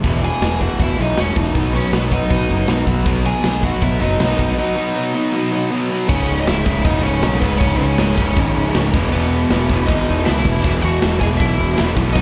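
Driving a straight 158 BPM in 4/4, this raw, aggressive punk rock passage, cut from a longer piece and captured like a live club gig through the venue's PA, rides an up-front acoustic kit with a punchy kick, medium-tuned snare, glittering crash and hi-hat in a big room, under a fuzzy, overdriven picked bass, while a cranked stack guitar with overdrive and slapback echo and a bright distorted guitar with slapback sit back on the riff. From 0.2 s a smooth, warm overdriven lead guitar with slapback echo carries the melody, and at 3.1 s a very quiet double-tracked distorted guitar joins as the chords move from E and B into C#m and back to E.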